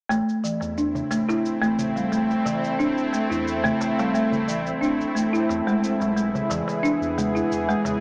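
This earthy, hypnotic slice of organic downtempo opens at 0.1 s with a woody folk marimba played with soft mallets, rolling out up-front arpeggios over a round sine sub bass, a tape-tinged electronic cabasa in a small room, and a clay-shelled darbuka struck by soft hands in the background. At 0.8 s a bright, nasal, string-like drone arrives with a slow attack, holding tense, evolving sustained chords with vibrato and its own built-in reverb. The dry, rustic marimba passes through a low-pass filter and digital delay, and a filter sweep runs across its whole part. The harmony rests on A minor before shifting to E at 5.5 s. A huge ambient reverb and the sound of a worn cassette, with warbly pitch drift and a small-speaker tone, give the whole passage a hazy, aged character, and it reads as a piece cut from a longer work.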